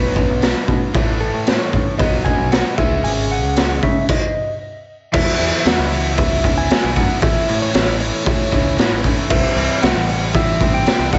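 A raw garage drum kit sits up front in this driving, sunny classic rock excerpt at 115 BPM in a straight 4/4. It enters at 0.2 seconds with a punchy kick, medium-tuned snare, hi-hat and crash cymbal, all sounding saturated and gritty with a rolled-off top. A clean, compressed lap steel guitar carries the melody with slide and volume swells, coloured by slapback echo and analog delay. Beneath it, a bright, overdriven semi-hollow guitar, double-tracked and picked, drives the riff with its own slapback echo, while a picked electric bass adds a warm, direct low end. The opening passage moves through B5, A and C#5 before a stop from 4.1 to 5.1 seconds, and the next passage moves through Esus2, A and C. The whole mix has a small-room, lightly reverberant sound with a mellow top end.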